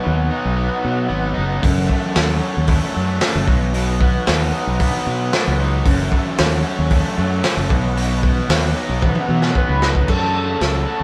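This hypnotic, dark psychedelic rock excerpt opens on a raw garage guitar riff, overdriven and double-tracked, over sustained tonewheel organ chords that sit in the background with a slow rotary speaker and chorus vibrato. A round, punchy fingered electric bass joins almost at once, up front in the mix. At 1.6 seconds a crunchy breakbeat drum kit enters with a tight kick, a medium-tuned snare, hi-hat, toms and dark crash cymbals, and its gritty, saturated sound has a rolled-off top. The band moves at a straight 114 BPM in 4/4, alternating between B and F#m in F# dorian. A drum fill arrives at 9.0 seconds. At 9.6 seconds a screaming, nasal, guitar-like synth lead with vibrato cuts in briefly. The whole performance sounds like a band playing live in one room, with moderate studio reverb.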